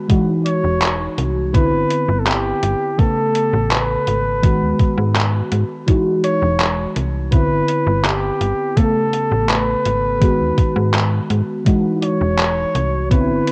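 A mellow FM electric piano, round and dark under phaser and analog chorus, opens this dreamy, nostalgic vaporwave fragment at 83 BPM in E major, soon joined by a thumpy, gritty electronic kick up front, handclaps and hi-hat from a detuned 8-bit drum machine, a snappy, metallic slap-like FM bass with tube saturation, and a close-miked jazz flugelhorn melody with vibrato and tape echo, as the chords cycle through Emaj9, Cmaj9, Amaj9 and G#m7 in moderate spring reverb and the muffled haze of a home cassette recording.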